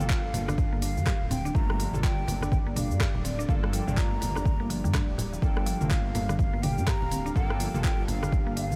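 Driving and hypnotic, this afro house excerpt at 124 BPM in G minor rests on a single Gm9 chord, with a breathy, hollow flute melody floating over a deep, rumbling detuned saw bass, a punchy electronic kick, a deep house kit of handclaps, hi-hat, rim click, shaker and toms, close and dry congas, woody mallet-like synth pluck arpeggios with delay, background keys stabs, and a smooth pad whose sustained chords pump against the kick.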